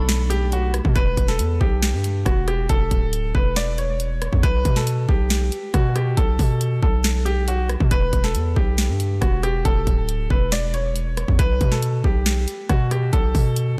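Hard-hitting and menacing, this half-time trap cut from a longer piece moves at 138 BPM in E dorian, circling Em7 and Gadd9/B after an opening Bm7. A clear, intimate baby grand piano carries the melody between F#4 and D5, its audible action noise softened by a low-pass filter and trailed by delay. Beneath it, a distorted 808-style bass pushes up front with a saturated, heavy sine tone, a noise layer and a fast attack that decays, ranging from D1 to B2. The trap drum kit enters at 0.1 seconds with a hard-clipped kick, sharp snare, rim click and bright hi-hats, re-recorded in a small room and placed up front. Only in the first second, a soft, pure FM synth bell sounds a B5 in the background, colored by chorus, phaser and delay, while a muted string section bowed con sordino sustains dark, veiled chords with vibrato before falling away at 0.9 seconds. Light reverb and digital ambience frame the mix.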